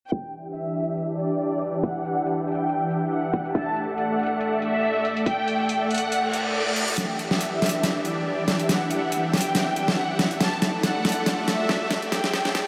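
A swung, half-time groove drives this menacing, chaotic slice of heavy wobble dubstep, with an overdriven drum kit of deep snare and bright hats and a punchy, tape-warm electronic kick that drops away at 5.4 seconds. Up front, a detuned supersaw pad holds sustained chords under a filter sweep and sidechain pumping, while a lush bowed violin section carries the vibrato-rich melody through delay. A reverse cymbal and riser sneak in from the background at 6.2 seconds ahead of a build-up and drum fill from 7.0 seconds, where the violins get their own filter sweep, all bathed in a dreamy, cavernous reverb.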